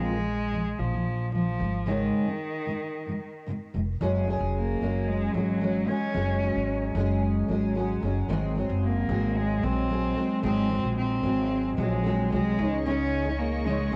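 Acoustic pop at 112 BPM in a straight 4/4, sunny and carefree, this short cut from a longer piece sets a rich, smooth bowed cello melody with vibrato and analog delay over a full-bodied, double-tracked fingerpicked steel-string guitar with a cassette-tape tint, all anchored by a woody pizzicato upright bass. At 12.6 s a soft-attack string section enters with intimate sul tasto chords under a gentle cassette haze as the harmony settles on Dbsus2. Studio reverb and a homespun cassette recording give the whole piece a warm, close-knit feel.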